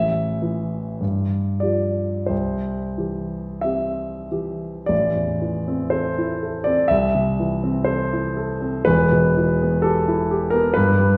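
Tender and nostalgic, this brief romantic nocturne for solo piano drifts in 4/4 with a loose rubato feel at 43-66 BPM, cut from a longer piece. A dark, mellow grand piano sits up front, spanning E1 to E5, opening in C major before the harmony turns to A minor at 4.9 s and settles on E minor near the close. A lingering recital-hall reverb, as in a church or concert hall, surrounds the instrument.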